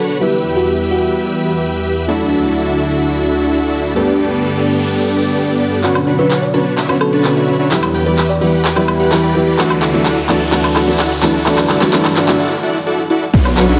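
Festival progressive house cut from a longer piece, powerful and euphoric, where a huge, bright supersaw lead carries the riff up front through a filter sweep and tape echo, over a lush, vintage-warbling unison pad, a warm grand piano pumping with the sidechain, and sparkling bell-like FM electric piano phrases tucked in the background. An overdriven big-room kit of crisp hi-hats, handclaps, cabasa, woodblock and crash cymbal, all with filtered, large-room character, drives things from the start, and from 5.8 seconds the build-up takes hold with a drum fill while a background riser and downlifter climbs under a deep ambient reverb. After a break at 12.4 seconds, a thick, mellow detuned saw bass and a punchy overdriven electronic kick drop in at 13.3 seconds.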